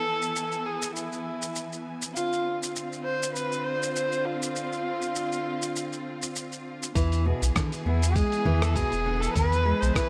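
A gently swung 100 BPM groove from a gritty, dusty sampler-style kit of congas, hi-hat, rim click and shaker enters at 0.2 seconds under this mystical, hypnotic organic downtempo excerpt in E phrygian dominant, moving from E to Dm7 and back. An expressive, up-front bowed kamancheh carries the vibrato-rich melody with a soft attack, delay and shimmer reverb, over lush, pumping symphonic string chords, all set in a moderate hall. At 7.0 seconds a thumpy, tape-warm electronic kick, a deep, round, pumping sine sub bass and a dark, small fingerpicked nylon-string guitar playing arpeggios with audible finger squeak and shimmering delay join in.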